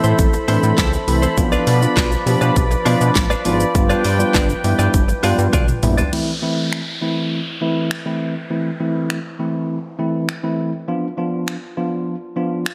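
A straight 4/4 pulse at 101 BPM drives this confident dance-pop excerpt in A minor, where a punchy electronic pop kit with a fat snare, handclaps and finger snaps backs an up-front tine electric piano, a glossy detuned synth bass, a smooth pumping analog pad, a clean direct-recorded guitar riff and a grainy, very quiet tube shaker, until a drum fill leads to bass, pad, guitar and shaker stopping around 6 s as an electronic downlifter enters beneath the piano and drums, the mix soaked in dreamy plate reverb.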